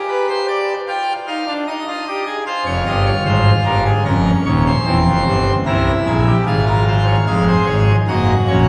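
A full pipe organ opens at once, its mixtures ringing out with a brilliant, majestic tone and a distinct chiff at the front of each note. This is a serious, contemplative baroque-style fugue in four parts, moving in a steady, straight triple metre and cut from a longer piece. The organ plays alone throughout, spanning deep notes down to Eb1 and upper lines reaching G5, with a baroque voicing placed up front. The harmony passes through chords such as G7, Fm and Dbmaj13, and a new passage begins at 7.3 seconds, moving through Db/F to Ebm7/Gb before the clip ends at 8.7 seconds. A long cathedral reverb hangs around the sound, captured in a church or concert hall with a touch of closer room ambience.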